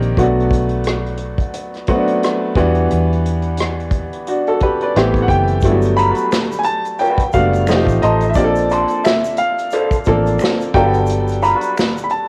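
A home cassette recording with light reverb and studio ambience frames this sultry, smooth neo-soul R&B excerpt at 88 BPM with a swung 16th feel, opening with a bright, woody upright piano up front, a dark, round foam-muted electric bass with transformer saturation, and a distant, roomy unplugged drum kit played with bundle sticks on tight kick, medium-tuned snare, rim click and hi-hat. After an upright piano fill at 4.6 seconds, the second half moves through Gmaj7, F7 and Bbmaj9 as a clear, polished baby grand piano carries the melody through analog delay, a slightly broken-up, lo-fi electric guitar through a small old amp adds a second line with wah, and an egg shaker and finger snaps sit far in the background from 5.6 seconds.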